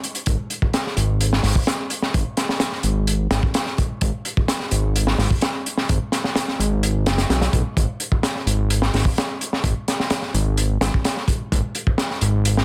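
A straight 4/4 breakbeat groove at 128 BPM drives this gritty, energetic excerpt in G# minor, with a crunchy, saturated drum kit of punchy kick, high-tuned snare and hi-hat sitting up front, recorded in a small room and dark with a rolled-off top. A fat, detuned sawtooth bass enters at 0.3 seconds, thick and up front with a fast attack that decays, holding low between F#1 and B1. Light reverb and a dense, heavily limited modern master keep the whole short passage tight and forceful.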